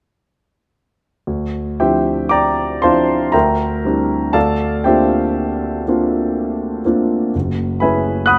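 Closely and finely miked with a touch of reverb, this hazy, wistful fragment of impressionist classical solo piano in D minor drifts in a rubato 3/4 at 55-64 BPM, its clear, present grand piano sitting up front with long sustain as it plays from 1.3 to 8.4 seconds across a range from F#1 to F#6, moving through lush extended chords from Dm11 to F#m11, all tuned to A4 = 439 Hz.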